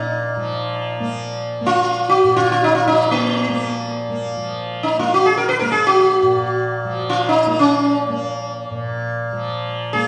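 Longing and meditative, this short excerpt of Hindustani classical music unfolds in free time in raga bhairavi on Bb. A plectrum-plucked sitar carries the melody across a range of Bb3 to Cb5, its buzzing tone ringing with sympathetic strings. Beneath it, a softly plucked tanpura holds a bright drone between Bb2 and Bb3, sitting lower in the mix than the sitar. Both instruments sound throughout the full 10.1 seconds, each with its own shimmering quality and placed up front. The recording has the lush reverb of a recital hall, with a 1.2-second decay, and a gentle, dulled top end that lends the performance an intimate, contemplative air.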